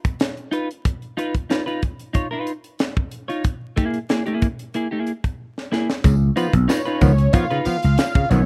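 A straight 4/4 funk groove at 92 BPM in Db mixolydian opens this short, energetic and gritty cut from a longer piece, driven by a tight acoustic drum kit with a high-tuned snare, tight kick and hi-hat, sitting up front in a small room. A clean, compressed electric guitar with analog chorus enters at 0.5 seconds, picking chords from a rootless Db9 to E. A drum fill at 5.4 seconds leads into a new section at 6.0 seconds, where the harmony returns to Db9. Here a bright, growly, punchy slap bass arrives loud and up front alongside stringy clav stabs through a combo amp and a jingly tambourine set distant in the background. At 6.7 seconds a fat, detuned sawtooth lead with a sub octave, vibrato and phaser adds a sustained melody. The rough home-demo mix carries small room ambience and a layer of vinyl crackle.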